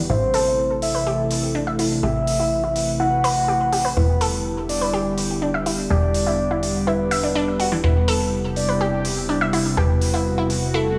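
This expansive, emotional progressive house excerpt opens at once with an airy, breathy pad holding sustained chords, a detuned analog pluck running arpeggios through chorus, cassette tape coloring and digital delay, and a punchy, funky analog bass, while filter sweeps move across both pad and pluck. A soft, round, octave-layered synth lead carries the melody from 0.1 s with vibrato, chorus and delay, and crisp electronic hi-hats join at 0.3 s. The harmony moves from Am to Em7 to Cmaj7/E inside a light, small-room ambience.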